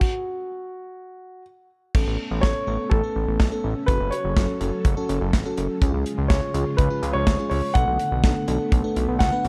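A straight 4/4 pulse at 124 BPM drives this melancholic synth-pop passage: a smooth, rolled-off acoustic drum kit with a tight kick plays up front, while an intimate dark grand piano with audible action noise carries the melody through an analog delay across a stop in the opening 1.9 seconds. At 1.9 seconds a fat, detuned sawtooth analog bass with a filter sweep enters up front, joined by a dreamy, chorused FM electric piano layered with a soft pad and by vintage string-machine cellos held in the background with ensemble chorus, all moving through Aadd9, F#m, C# and Bm7. Light small-room reverb gives the whole piece a close, compact space.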